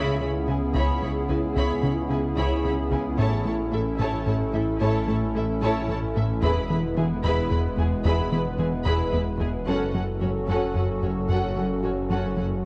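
Brooding and tense, this cinematic hybrid orchestral-electronic film cue in C# minor moves at 74 BPM in 6/8 and builds throughout over a C#m7–A–E–F#m progression: a thick, menacing detuned saw bass and a punchy, ring-modulated plucky analog bass riff drive beneath a hollow, airy, flute-like pad with chorus held up front, while lush bowed violins with vibrato carry a second line over distant violas and very quiet cellos, opening on a brief band accent, and the mix sits in a recital-hall reverb under the warbling pitch drift of worn cassette tape.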